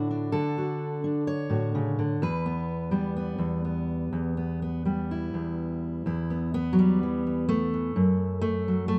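Wistful and intimate, this short folk excerpt, cut from a longer piece, features a solo fingerpicked steel-string acoustic guitar in E dorian. The tempo sits around 63 BPM in 4/4, but the playing moves with a loose, rubato feel. The dreadnought guitar sounds dark and full-bodied, placed up front in the mix, and spans from E2 up to C#5. The harmony moves from D to Em in the opening passage, then shifts at 6.1 seconds to a sparer E5 before settling on F#m near the close. Light reverb and a shadowy, mellow production give the guitar a close, private character.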